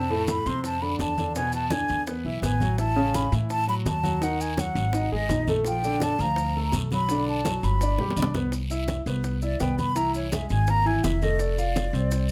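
Afro-Cuban jazz at a lively, sophisticated 167 BPM in straight 4/4, cut from a longer piece, with a breathy, hollow silver flute carrying the melody with vibrato and tongued notes in plate reverb. Its partners are an up-front concert grand piano with deep bass, long sustain and audible action noise, and a woody pizzicato upright bass. Bright low-tuned congas and round bongos sit close and dry in the background, a raspy guiro is close and dry, and grainy maracas sit close in the background. The chord changes settle into C major after a short drum fill at 8.0 s, where the flute takes a solo from 8.5 s.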